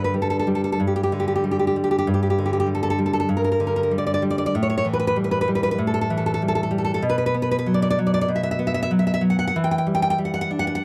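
Nostalgic and sunny, this romantic excerpt for solo classical guitar unfolds in a rubato 4/4, its full-bodied, fingerpicked nylon strings sitting up front in a dry, close 1970s-style studio sound where finger squeak is audible as the harmony moves from G5 through A5 and B5 to Em7 at 9.5 seconds.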